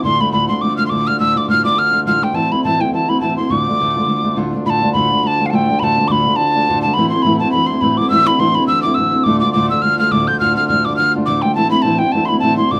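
A wet studio ambience with a short tail frames this driving, dark and lively Celtic reel in D dorian, taken from a longer piece and moving at a swung 209 BPM in 4/4. Up front, a breathy metal tin whistle carries the melody with tongued chiff, vibrato and rolled-off highs, while a full-bodied dreadnought steel-string guitar fingerpicks a dark accompaniment, finger squeaks audible, over chords shifting between Dm and Am. Beneath them a reedy, breathing pedal harmonium holds a low, mellow drone throughout.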